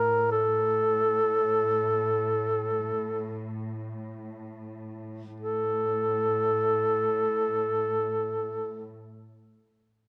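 Solemn and mournful, this short cut from a longer Caucasian folk lament in free time sets a mellow duduk melody, played with vibrato and scooped notes up front between A4 and Bb4, over a dark, softly bowed chamber string drone on A2 with a smooth top, all in light reverb, easing to a slower pace through the first 5.4 seconds before a new section begins.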